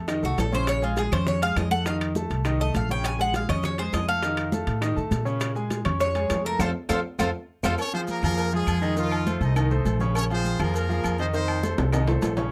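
Driving and danceable, this brief salsa cut in Bb minor races along at 203 BPM over a woody, thumpy upright bass and a bright grand piano with audible action noise, while congas, round bongos and cowbell, ringing timbales and agogo bells, grainy maracas and very quiet claves fill out the percussion, a metallic, double-strung Cuban tres takes an up-front solo from 0.2 s until a band accent and drum fill hand over at 7.8 s to a brilliant, octave-doubled horn section with light vibrato, all set in light reverb.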